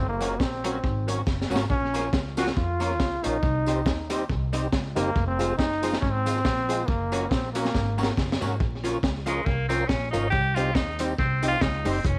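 A bright, up-front trombone melody and thumpy pizzicato upright bass open this mischievous, energetic ska excerpt at 139 BPM in Bb minor with a light swing, joined by a crunchy, saturated breakbeat kit with a high-tuned snare and tape echo, a jingly tambourine kept very quiet, a dark, hollow-body archtop guitar with its own tape echo, and a round tonewheel organ with chorus vibrato and slow rotary speaker stabbing in the background, before the trombone stops at 8.1 seconds and a vintage-toned tenor saxophone with scooped notes takes a solo from 9.3 seconds, the whole set in a small room ambience with vinyl crackle.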